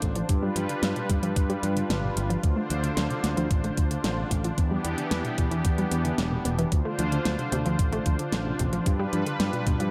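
A brassy, detuned sawtooth pad sits up front, holding sustained chords with chorus, vibrato and a pumping sidechain feel over a moody, nocturnal synthwave groove in D dorian at 112 BPM, moving through G7, Dm7 and Em7. Beneath it, an overdriven picked electric bass gives a dark, round punch, while a thumpy, tape-warm electronic kick and a pop kit with a fat, gated snare and metallic hi-hats drive a straight 4/4 pulse. In the background, a decaying analog pluck plays arpeggios through chorus and delay, a filter sweep running across it for the whole of this excerpt cut from a longer piece.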